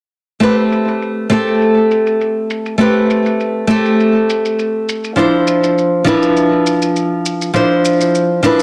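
A dense, heavily limited master with a wet plate reverb and small-room ambience frames this short sunset chillout excerpt in A minor at 101 BPM, where an up-front, woody nylon-string guitar with old strings is fingerpicked over Am9 and Dm9, roughened by vintage 12-bit sampler grit and tape echo, while a quiet, overdriven electronic shaker, low-pass filtered and re-recorded in a small room, keeps a straight, smooth pulse from 0.4 to 8.6 seconds.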